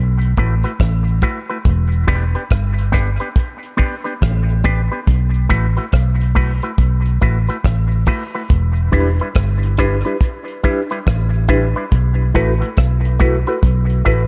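Swung sixteenths drive this hypnotic, meditative dub reggae, where a dry 70s drum kit with a tight kick and hi-hat and rim click sits up front beside a dark, round, foam-muted electric bass, while a scooped, envelope-filtered electric guitar soaked in spring reverb and dub echo, a cabasa in the background, and, from 8.9 seconds, a reedy electric piano with fast tremolo fill out an echo-heavy small-room mix that circles between B7sus4 and Em7.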